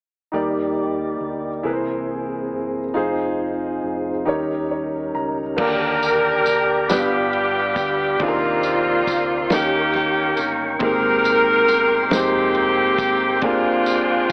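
A clear, intimate baby grand piano plays accompaniment from 0.3 s in this slow gospel excerpt, set up front with its action noise audible and a plate reverb around it. From the same moment, a clear tonewheel organ, lightly overdriven through a slow rotary speaker with key click and vibrato, holds sustained chords beneath it, and a round, dark hollow-body electric bass sits low in the mix. The piece moves in a straight 6/8 at 46 dotted-quarter beats per minute in Eb major, drifting through soulful chords such as Ebmaj7, Caug7, Cm9/Eb and Abmaj9 before settling on Bb13. A piano fill at 4.3 s leads into the second section at 5.6 s, where a bright, loose saxophone section takes the melody up front with jazz-style vibrato. A warm soul drum kit with a fat snare, tight kick and dark cymbals comes in at the same moment, tucked in the background, and a jingly tambourine joins just after. The whole recording has the worn, narrow colour of cassette tape and AM radio in a small room, framing its soulful, hopeful mood.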